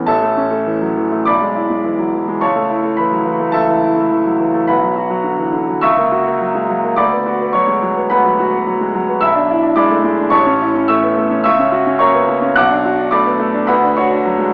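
Played in 4/4 at about 106 BPM with a flexible, rubato feel, this classical virtuoso piano study in A major has a heroic, brilliant mood. A solo concert grand carries the whole passage from 0.0 to 14.5 seconds, spanning A1 to F#6, with a bright, brilliant tone, deep bass and long sustain. The piano sits up front in an open sound, surrounded by a moderate recital hall reverb. The harmony moves from A through E7/B and A/C# into Bm, F#7/C# and Bm/D, returns to A at 10.3 seconds, then turns again toward Bm7 and Bm/D. An AM radio quality colours the recording, and the clip is cut from a longer piece.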